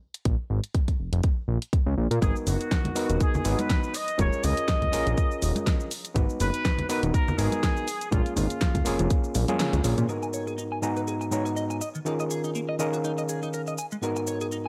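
A sensual, sleek nu-disco excerpt at 122 BPM in G# dorian opens on a fat-snared pop drum kit with hi-hat, shaker and toms, joined by a punchy, up-front electronic kick and a fat, detuned sawtooth analog bass. At 2.2 s a gritty, reedy overdriven electric piano pumps and echoes alongside a clear, tight vintage trumpet section with vibrato and delay, over ringing hard-hand congas in the background, until a drum fill and band accent usher in, at 10.1 s, a clean, picked, chorused electric guitar riff in light reverb, joining the drums and electric piano.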